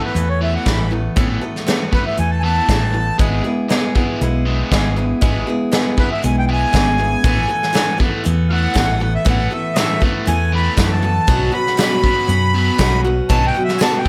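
A straight 4/4 pulse at 119 BPM drives this jangly, nostalgic folk rock and heartland rock excerpt, with a roomy brushed drum kit and punchy kick sitting up front beside a dark, round hollow-body electric bass. A reedy accordion with slow beating carries the melody as a solo over a boxy, picked swing-style acoustic guitar with audible finger squeak and a bright, overdriven, double-tracked electric guitar riff, moving through Asus2, E/G#, and Bsus2. A jingly, very quiet tambourine joins at 7.7 seconds, and light reverb gives the whole a gentle sense of space.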